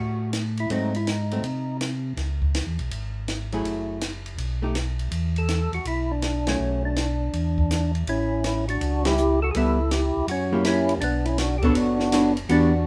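Set in a moderate studio room, this swinging, soulful soul jazz organ trio excerpt features a fat, lightly overdriven tonewheel organ melody with third-harmonic percussion and a slow rotary speaker, heard briefly at the start and again from 5.4 seconds. Beneath it sit a round, key-clicking tonewheel organ bass, a dry cocktail drum kit with dark cymbals, high-tuned snare and punchy kick, and a clean, hollow-body archtop guitar in accompaniment, with full-band accents at 6.4 and 9.0 seconds.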